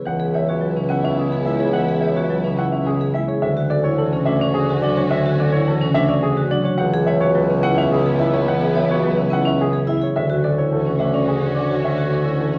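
This classical minimalist pattern piece, cut from a longer work, moves in a meditative, hypnotic 3/4 with a straight feel. A dark, mellow grand piano carries the melody in the middle-upper register, while an up-front marimba played with medium mallets supplies a boxy accompaniment below it. A vibraphone with medium hard mallets spins metallic, ringing arpeggios colored by a slow motor vibrato, and a close-miked solo bassoon anchors the bass with light vibrato and a warm classical tone. Behind them, a distant chamber string section holds dark, expressive bowed chords. The harmony sways between C#m7 and Dmaj9 every few bars, and the whole recording sits in a moderate scoring-stage reverb with the worn, warbling pitch drift of old cassette tape.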